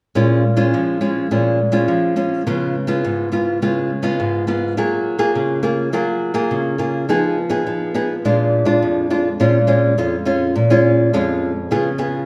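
A solo nylon-string guitar, fingerpicked and up front with a small, warm tone, carries this nostalgic, yearning samba in Bb minor at 104 BPM in a straight 4/4. Cut from a longer piece, it moves through Bbm7, Db7, Gbmaj9 and Fm7b5 to Bb7 before a second section begins at 9.4 seconds, returning to Bbm7 and Db7. A wet reverb with a long 1.7-second tail gives the guitar the airy spaciousness of a church or concert hall.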